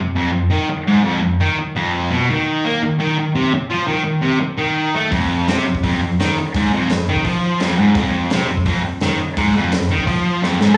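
A bright, fuzz-drenched electric guitar leads this rowdy, swaggering garage rock excerpt, picking a compressed, double-tracked riff that sits up front from the very start and runs for the full 10.8 seconds. Its distortion carries a slapback echo, and the riff moves between F2 and Bb3 at a brisk 169 BPM in a straight 4/4. At 5.1 seconds a crunchy breakbeat drum kit joins under the guitar, with a tight kick, a high-tuned snare and hi-hat, its saturated, gritty tone and rolled-off top keeping it set back in the mix. A short drum fill closes the passage at 10.4 seconds, just before the cut. The whole thing sounds like a live gig heard through the venue's PA, with moderate club reverb and small-room ambience giving it a loose, sweaty immediacy.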